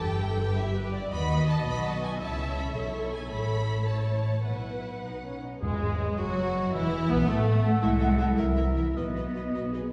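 A fast, cheerful and spirited romantic orchestral passage in 6/8 at 100-113 BPM with a rubato feel opens with lush bowed strings, a distant violin section carrying the melody over a second violin line, close portamento violas, dark cellos and an up-front double bass section, before flutes, oboe, a very quiet bright clarinet and soft French horn chords join at 5.6 s alongside a brief hard-mallet timpani stroke, all in a recital hall reverb.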